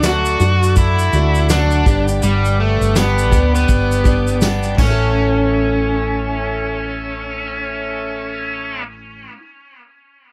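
An up-front overdriven slide guitar carries the heartfelt, carefree melody through tape echo in this short acoustic pop excerpt at 82 BPM in A mixolydian, over picked steel-string acoustic guitar with finger squeak, a round, punchy hollow-body bass, a reedy organ holding chords in the background, and a soft brush kit with fat snare and jingly, very quiet tambourine that both drop out by 5.5 seconds, all in a dark, dry production moving from D to G to A.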